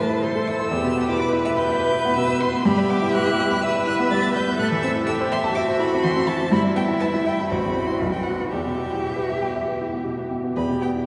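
Awash in a cavernous cathedral reverb with a dark, muted top, this dramatic, urgent excerpt from a quick classical-period piano quartet movement is anchored by an up-front, intimate baby grand, its action noise audible and its notes short-lived as it carries the accompaniment. Above it, a focused, distant solo violin sings the high melody with vibrato, while a second violin adds a smooth, even line in the background and a close cello contributes an expressive second voice with soft attacks, vibrato and portamento. The harmony moves between minor chords, then passes through a B major chord that resolves to E minor at 8.5 seconds.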